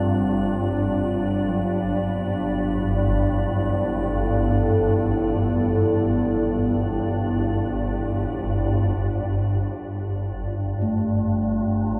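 Dark ambient drone in free time, desolate and ominous, where a swarming, detuned granular drone sits up front beneath a deep, wave-folded analog pad holding sustained chords, an icy, crystalline glass pad that stops at 9.0 seconds, and a mellow bronze metallophone entering at 1.5 seconds with soft, delayed arpeggios in the background, all washed in a huge, dark reverb as the harmony moves from Gm to Bm and settles on Gmadd9 at 9.0 seconds in this fragment of a longer piece.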